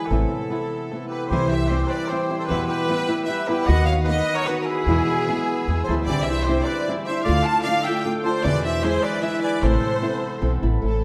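A straight 3/4 pulse at 151 BPM drives this dramatic, passionate mariachi fragment in A minor, where a lush, vibrato-rich studio violin section carries the melody up front while a mellow, roomy trumpet with tape echo plays a distant classical-style second line until 10.4 seconds. Beneath them, a fingerpicked flamenco guitar supplies acoustic accompaniment, a concert harp rings out bright arpeggios, and a woody pizzicato upright bass anchors the low end. A second, very quiet violin section enters at 1.3 seconds with sustained chords, and the whole ensemble sits in a moderate recital-hall reverb as the harmony moves from Amadd9 through C, Em, B/D#, E, Cadd9, Dm and E7 before returning to Amadd9.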